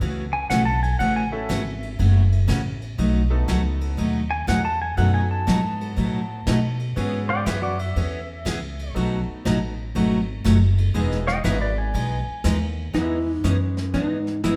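Cheerful, down-home western swing country at 121 BPM in E major, swung in 4/4, where woody pizzicato upright bass, a bright dreadnought acoustic guitar, a brilliant upright piano with audible action noise and a vintage brush kit with dark cymbals carry the accompaniment while a clean, fingerpicked pedal steel with volume swells and slide solos from 0.3 s to 12.9 s, after which a compressed hollow-body jazz guitar takes the melody, the band playing live together in a stone room with wet reverb.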